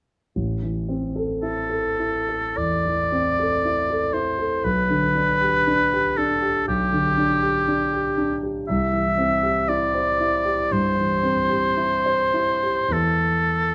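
Elegiac and yearning, this romantic classical duo in A minor moves at a slow, rubato 50-61 BPM in 4/4, with a dark, mellow concert grand piano opening the accompaniment at 0.4 seconds, its deep bass and short sustain carrying the harmony from Am through G/B and C to E5. A clear oboe enters at 1.4 seconds with the solo melody, sung in a classical style with light vibrato and placed up front, slightly louder than the piano. Close, detailed microphones and light reverb frame this brief excerpt, though lossy compression artefacts are audible.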